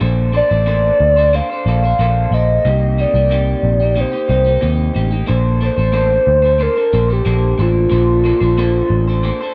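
A hollow, woody clarinet-like synth lead carries the melody from 0.4 s with subtle chorus and tape echo, over a slightly broken-up, compressed electric guitar played through a small old amp with chorus and vibrato, and a dark, round, foam-muted picked bass sitting up front, in a dreamy, sunny indie and bedroom pop piece at 91 BPM in Bb major that moves from Bbmaj9 to Cm7 and back, all captured dry and close like a 1970s studio recording.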